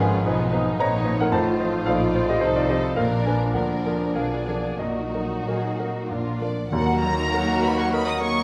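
A clear, present grand piano leads this brooding, passionate romantic movement for piano and orchestra, carrying the melody up front across a range from Eb2 to Bb5. Set in Eb minor and 3/4 with a rubato feel that moves between 90 and 114 BPM, it is a short passage cut from a longer piece. Behind the piano, a lush violin section sings the melody with expressive vibrato in the background, while a second, focused violin section adds a smooth second line. Violas fill out the accompaniment, a mellow French horn section holds sustained chords, and very quiet, rich cellos join even, bowed double basses on the bass. At 6.7 seconds the harmony settles on Eb minor and fresh woodwind colours arrive: a hollow, pure flute, a vintage-toned cor anglais and a distant clarinet add second lines, a roomy bassoon joins the accompaniment, and timpani struck with soft mallets give a round accent until 7.6 seconds. 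Moderate concert hall reverb surrounds the ensemble with a spacious glow.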